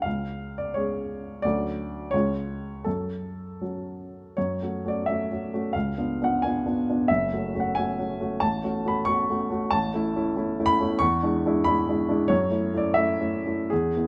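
A single high note on an upright piano opens the recording at 0.1 s, the start of a romantic character piece in the classical tradition, taken from a longer work. The solo piano plays throughout in a flexible, rubato duple metre, with a warm and passionate mood. Its tone is woody and close, with short sustain, and it sits up front in a large studio space whose moderate reverb adds a gentle halo. The harmony moves through a major seventh chord and a dark minor home chord, then a new passage begins around 4.4 s, touching a tense dominant chord with a flattened ninth. From there the phrase leans toward its relative major before an E7 draws it back to a minor seventh chord near 12.3 s, where the excerpt closes.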